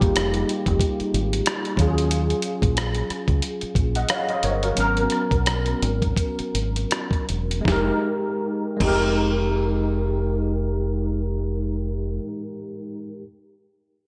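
Soulful and introspective, this neo-soul R&B fragment swings its 16ths at 78-92 BPM in 4/4, slowing between 2.1 and 7.6 seconds over minor eleventh chords moving from Fm11 through Ebm11 and Abm11 and back. A barky, overdriven tine electric piano played through a combo amp carries the accompaniment with ensemble chorus, over a dark, round fingered electric bass and a thumpy, tape-warm sampler-style drum kit of kick, medium-tuned snare, rim click, hi-hat and crash, bathed in gated reverb. The drums drop out at 9.0 seconds, the bass at 12.2 and the piano at 13.2, all within a bright 1980s-style digital production with light reverb.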